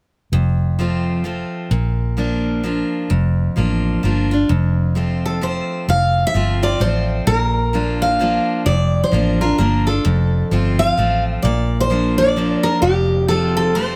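A bright steel-string acoustic guitar with fresh strings carries the tune in this down-home honky-tonk waltz. It enters at 5.3 seconds with a picked line, a touch of finger squeak and an auditorium-style body, sitting up front in the mix. Beneath it, a second picked acoustic guitar with a full-bodied jumbo tone has played the accompaniment since 0.3 seconds, also close and present. A vintage electric bass, dark, round and foam-muted with an amped edge, holds down the low end as the harmony moves between F and B-flat. The easygoing classic country feel rolls along in three with a swung lilt. Light reverb gives the small group a gentle sense of space, and the clip is taken from a longer piece.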